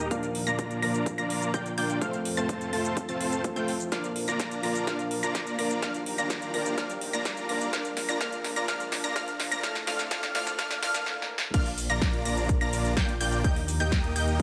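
A straight 4/4 pulse at 126 BPM drives this uplifting, euphoric slice of festival progressive house in Bb major, cut from a longer piece. A punchy electronic kick and a big-room kit of snare, metallic hi-hats, shaker and crash carry a build-up from the start, with a drum fill from 3.9 seconds and a brief stop before the drop lands at 11.5 seconds. Up front sits a huge, dense supersaw riff, detuned and compressed with vibrato, swept by a filter through the build and trailed by delay, while a punchy unison pluck spins high arpeggios that decay into echoes. In the background a soft, felt-muted upright piano plays dark, intimate accompaniment until 11.6 seconds, and a chorused, warbling vintage pad holds slow-attack chords. A very quiet riser and swell rise beneath the build, and at the drop a thick, saturated detuned saw bass arrives, mellow and chorused. The sidechain pumping on the melodic parts and the bass, together with a moderate lush hall reverb, gives the sound its breathing, festival-scale glow.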